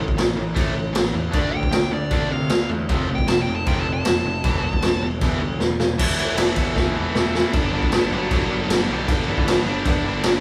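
Punk rock at 155 BPM in a straight 4/4, this urgent, aggressive cut from a longer piece sounds like a band playing live in one room with light reverb. A raw garage drum kit sits up front, its boomy kick, medium-tuned snare and crash cymbal saturated and gritty with a rolled-off top, and drum fills lead into a short middle passage at 6.0 seconds and again into the final section at 7.5 seconds. Two overdriven guitars pick out riffs in the background, one bright and the other biting, while a fuzzed, growly picked electric bass drives underneath. A dark, high-gain lead guitar carries the melody over the top, entering at 1.3 seconds and returning at 7.5 seconds for the final stretch. The harmony moves from A5 through Dm, F and Em before landing on G.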